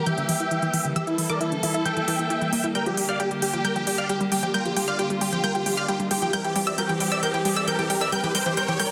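A straight 4/4 pulse at 134 BPM, marked by smooth, layered electronic hi-hats bathed in studio reverb, drives this short, euphoric uplifting trance build-up, cut from a longer piece, as the harmony moves from Edim to Gm to C. A huge, detuned supersaw lead carries the melody up front through phaser, low-pass filter and digital delay, while a round, mellow analog pluck with chorus plays a second line above it, a warbling unison pluck spins delayed arpeggios, and an intimate chamber string section holds bowed chords with light vibrato. Filter sweeps on the arpeggios and on a synth pluck run throughout, and a background riser enters at 4.9 seconds, all within a dense, heavily limited modern master with light reverb.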